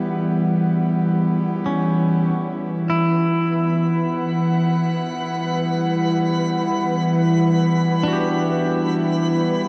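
Drenched in huge ambient reverb, this dark, reflective, serene ambient excerpt opens on an airy, breathy pad holding sustained chords up front, with a mellow, evolving analog drone on E3 sitting in the background, both treated with chorus. A clean, twangy electric guitar enters at 1.7 s with bright picked arpeggios trailed by tape echo. The harmony moves from Em to Em7 at 2.4 s, and at 2.7 s a twinkling granular texture adds sparkling octave-up shimmer.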